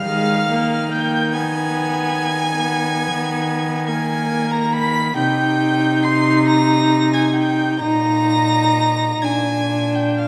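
Classical slow romantic movement for string quartet, lyrical and warm, in a rubato 12/8 at 41-48 BPM, where a dark, woody first violin sings the high melody with vibrato from a distant placement over a close, airy sul tasto second violin, an up-front viola with light vibrato and a nasal, pure, floating cello bass, all bowed through a wet scoring-stage reverb as the harmony moves from Bb over Eb to C minor and settles on Bb7 at 9.2 seconds in this fragment of a longer piece.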